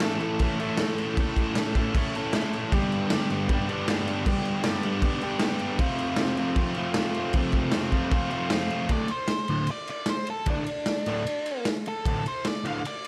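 A moderate studio reverb frames this raw, swaggering garage rock excerpt, where a picked, double-tracked overdriven electric guitar riff moves through A, G and F over a gritty, small-room drum kit with a punchy kick and crash and ride cymbals, until a dark octave-fuzz lead guitar with plate reverb enters on a D5 chord at 8.9 seconds.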